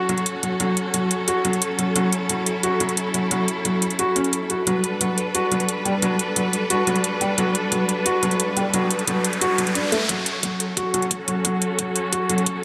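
Aggressive and mechanical, this dark technical drum and bass excerpt moves at 177 BPM in a straight 4/4, centred on F# phrygian and cut from a longer piece. Up front, a clear, focused studio string section holds bowed sustained chords with vibrato, shaped by sidechain pumping and a low-pass filter, while a soft, felt-muted upright piano plays intimate arpeggios with audible action noise, its pumping tone trailed by tape echo. Metallic electronic hi-hats sit forward in the mix from the start, layered and tape-tinged after being re-recorded in a small room. The harmony shifts from F#m to G at 4.7 seconds, and an electronic riser enters at 8.4 seconds to lead into a build-up where the chord returns to F#m. At 10.1 seconds a knocking electronic kick drum arrives in the background, high-pass filtered, as a filter sweep runs through the closing bars. A moderate, lush digital hall reverb lends the parts a polished sense of space.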